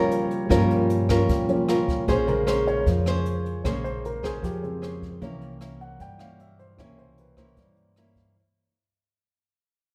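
A straight 4/4 bossa nova groove comes from a polished brushed drum kit, with airy hi-hat, rim click and a boomy kick, under pizzicato upright bass with a woody, steel-string tone. Fingerpicked nylon-string guitar sits small and up front with audible finger squeaks, while an intimate baby grand piano solos through Gm7b5, Bbm9 and C7b9 in a smooth, melancholic mood, its natural action noise showing. Moderate recital-hall reverb surrounds this fragment of a longer piece as it fades out across its 8.4 seconds.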